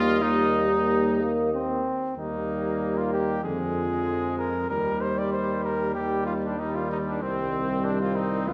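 A classical brass quintet opens all together in Eb major at 95 BPM, with a triumphant, steady 4/4 feel: a clear, soft-attacked trumpet carries the melody up front while a bright second trumpet with light vibrato shapes the harmony line beneath it. A distant, roomy trombone and a smooth-topped French horn set further back fill out the accompaniment, and a warm, punchy tuba anchors the bass near the front. The harmony moves from Eb through Ddim/F and back to Eb before settling on Cm, all bathed in a lush scoring-stage reverb in this brief passage cut from a longer piece.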